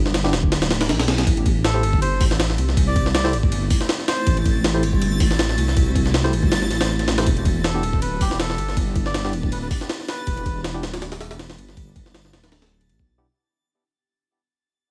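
Frenetic and raw, this drum and bass jungle cut opens at the drop with a gritty, overdriven sampler-style drum kit and a deep, rumbling detuned saw bass up front, while a blurred granular cloud pad, worn tine electric piano stabs with dub echo and a dreamy reversed texture entering at 2.7 seconds sit in the background, a reedy, breathy melodica with 12-bit grit carries the melody, vinyl crackle runs throughout, and the whole thing fades out from 7.3 seconds.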